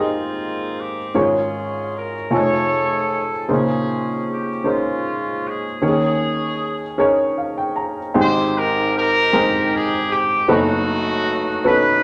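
A punchy, vintage-toned horn section carries the melody over an intimate baby grand piano with audible action noise from the very start of this reverent, jubilant gospel fragment in Ab major, moving in a slow 6/8 at 51 BPM through rich chords like Abmaj9 and F7alt, with a piano fill at 7.0 seconds leading into a new section at 8.2 seconds, all set in a wet studio reverb.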